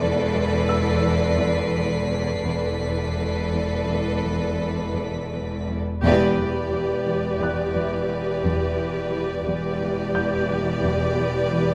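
In a straight 5/4 pulse at 83-89 BPM, this eerie, tense suspense cue in E minor sets a lush, vibrato-rich violin section's melody over a focused second violin line, a very quiet cello riff, and a low bed of bowed double basses, cellos and a detuned, warbling analog drone thickened with chorus. A faint high violin texture shimmers until 5.6 seconds, while a dark, felt-muted upright piano adds soft, mellow figures from 0.7 seconds. At 6.0 seconds an ensemble accent marks the shift from Bm7/E to Em7 as an expressive, up-front viola section enters, the whole cut-out passage bathed in the wet bloom of a concert hall.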